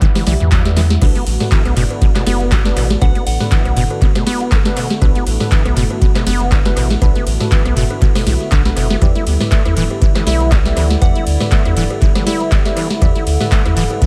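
A swung 16th-note groove at 120 BPM drives this gritty acid house cut in B minor. An up-front deep electronic kick and a booming analog drum machine, with crisp snare, claps, metallic hats, ride, toms, rim clicks and crash and a fill at 0.8 s, anchor a squelchy, resonant sawtooth acid riff and a round sine sub bass. In the background, smooth detuned pad chords pump, dark mellow chord stabs decay, a warbling lo-fi tape-like pad drifts, and a pure FM bell chimes briefly at 3.0 s and again at 11.0 s, all set in an echo-heavy mix with light reverb.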